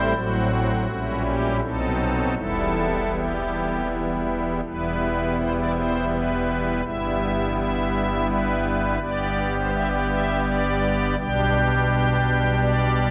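Moving in a flexible, rubato 3/4 at around 83 BPM, this short classical fragment, cut from a longer chorale-style piece for pipe organ, unfolds in E minor with a reverent, majestic bearing. The pipe organ plays alone throughout its 13.1 seconds, drawing on its strings celeste stops for a soft, shimmering tone with a romantic voicing that sits up front in the sound. Its range reaches from a deep E1 up to G5, giving the harmony both weight and lift. The opening moves through tense diminished colours and a B7b9 before settling onto E minor at 2.4 seconds, and the second phrase, beginning at 4.7 seconds, turns toward G major through Em/G, G and G/B. A wet cathedral reverb with a long 6.2-second decay surrounds the organ, letting each chord hang and blend in the vast space.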